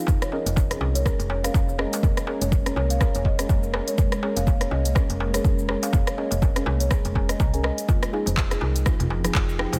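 An airy pad with ensemble chorus and reverb, a thumb-plucked kalimba with delay and a filter sweep, and dark, detuned chord stabs with phaser open this earthy, driving afro house excerpt at 123 BPM with a swung 16th feel, soon joined by a round, woody FM bass, an overdriven deep kick up front, an electronic kit of cabasa, handclaps, smooth hi-hat and rim click, and a crisp, dry darbuka, with the pad, kalimba, stabs and bass pumping on Bbm7/F until warm background congas enter at 7.9 seconds as the harmony moves to Fm7.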